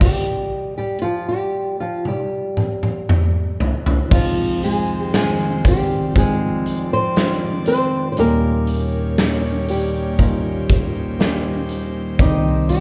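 A thumb-plucked flamenco guitar melody opens this melancholic, heartbroken pop ballad at 59 BPM in 4/4, over a clean, bright tine electric piano and a huge, boomy acoustic arena drum kit that holds a stop before a fill from 2.1 to 4.1 seconds, after which a soft, breathy, detuned pad with chorus drifts in at 4.6 seconds in the background, inside the wet reverb of a church or concert hall, in a passage cut from a longer piece.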